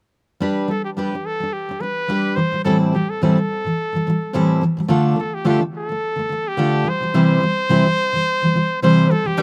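A lightly swung 16th-note feel at 107 BPM in 4/4 drives this carefree, heartfelt acoustic pop fragment in C major, where a full-bodied jumbo steel-string acoustic guitar picks the accompaniment through G, Am7, Dm and C, a bright pop-style solo trumpet with vibrato and slapback echo carries the melody up front from 0.7 s, and a round, double-strung mandolin arrives with arpeggios at 9.4 s, the whole captured outdoors with little reverb.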